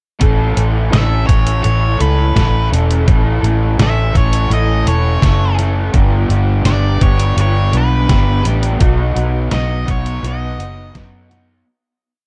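Guitar, bass and drum machine enter together at 0.2 seconds in this short, complete piece of dreamy, hazy shoegaze-flavoured rock and dream pop, moving at an unhurried 84 BPM in a straight 4/4. A raw, lo-fi garage guitar, overdriven and double-tracked with a subtle chorus, strums chords with whammy-bar dips while a vintage foam-muted fingered bass sits up front, round and amped, driving steady eighth notes underneath. The detuned 8-bit drum machine has a sampler-style, electronic character, with a thumpy kick, medium-tuned snare and hi-hat re-recorded in a small room to carry a pop groove. From 0.9 seconds an octave-fuzz lead guitar, dark and distorted with tape echo, threads a motif-based melody of song-like phrases, sitting lower in the mix than the rest. The single verse moves from A to G and then B as a fade-out begins at 8.8 seconds, all wrapped in a digital ambience with a dark, warm production.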